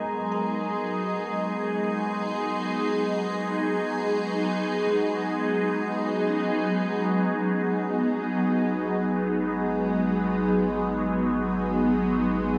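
A morphing wavetable pad holds sustained chords up front, treated with ensemble chorus, phaser and its own reverb, beside a calm, organ-like drone carrying the same effects. A clean, bell-like tine electric piano plays arpeggios in the background through tape echo, fading out before it stops at 7.9 s. This melancholic, reflective ambient fragment of a longer piece floats in a vast, echoing cathedral space, and at 7.1 s a round, dark analog bass enters deep underneath, sustaining to the end.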